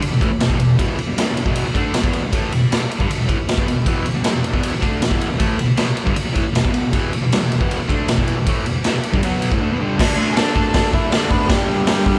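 Raw and gritty, this garage rock excerpt drives at 156 BPM in E minor, with a bright, double-tracked fuzz guitar riff and a punchy, saturated drum kit up front in a pumping stone room from the start, joined at 10.3 seconds by a buzzy, overdriven combo organ melody with light vibrato as the band plays live with light reverb.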